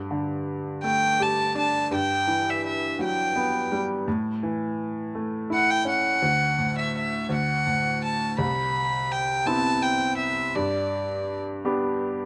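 In a 6/8 at 56 BPM, this tender, intimate acoustic folk-pop ballad in G major opens with a bright baby grand piano whose audible action noise and long sustain sit up front from 0.0 s, joined at 0.8 s by a single bowed violin singing a pure, floating sul tasto melody with a soft attack, all in light reverb as the chords move from Gsus2 toward a Cmaj7 lift at 8.4 s before settling on G.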